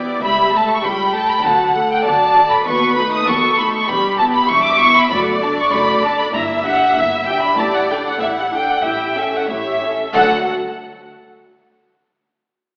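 Moving in an unevenly felt 4/4 at 97 BPM, this quick, graceful and lively classical-period movement for string orchestra in D major sets a smooth, up-front violin melody with light vibrato, entering at 0.2 s, over focused second violins, lush, close violas, and clear cellos and rich, expressive double basses in the background, all bathed in a wet hall reverb with an AM radio sound.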